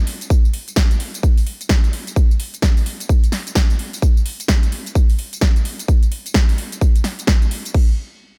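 A big-room dance kit opens this swaggering, gritty house excerpt, its layered snare, metallic hats, crash cymbal and tambourine riding a swung sixteenth-note feel in 4/4 over a digital ambience, and a punchy, up-front electronic kick joins a moment later to drive it.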